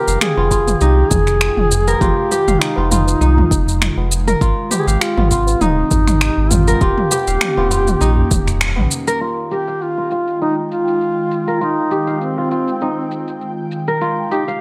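Set in a light reverb and digital ambience, this excerpt of meditative organic downtempo in F minor moves at 100 BPM with a gentle sixteenth-note swing. Up front, a mellow, folk-style duduk sings a solo melody with vibrato and scooped notes through tape echo, over crisp fingerpicked kora arpeggios and an ethereal, detuned pad whose Fm9 and Abmaj7 chords pump against a round sine sub bass. An overdriven electronic kit of finger snaps, shaker and toms, a deep tape-toned kick and a ringing low-tuned tabla in the background drive the groove until the kick drops at 8.4 s, the sub bass ends on a band accent at 8.9 s, and the tabla falls away at 9.2 s as filter sweeps move over the kora and pad.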